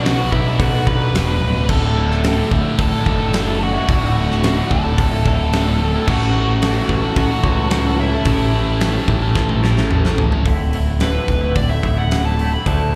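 Anthemic and cathartic, this excerpt of quiet-loud alternative rock in D major moves at 110 BPM in a straight 4/4, captured as a live gig through a club PA with small-room ambience. A biting lead guitar carries the melody over a growly, up-front picked bass, a big rock kit with a fat snare and punchy kick, a very quiet, distant string section holding sustained chords, and a bed of background riffs from a double-tracked high-gain guitar and two overdriven guitars, one with spring reverb and the other with phaser. After a drum fill, at 10.5 seconds the chords shift to Dsus2 and the lead guitar takes a solo while a twangy clean guitar enters with tremolo-shaded arpeggios.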